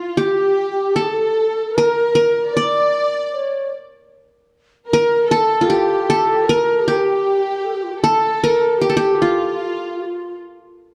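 Soulful and longing, this brief Turkish passage, cut from a longer piece, is led by a bright-edged, up-front qanun played with fingerpicks, its triple strings ringing out the melody. Behind it, a breathy, reedy low ney with vibrato sits in the background, while a distant, woody violin section bows a soft-attacked second line; both carry a slapback echo. A moderate recital hall reverb and a dark, warm production wrap the ensemble.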